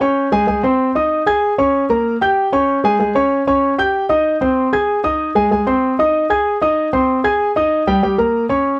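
Jazz at a brisk 191 BPM in straight 4/4, this short piece cut from a longer performance has a sophisticated, danceable mood. A solo grand piano carries the whole 8.8 seconds, ranging from G3 to Ab6 with an intimate, natural tone, long sustain and audible action noise, set up front under close, detailed microphones and light reverb. The harmony moves from Ab through Gdim, Absus4 and Eb7 back to Ab, closing on a rootless Eb7 at 8.0 seconds.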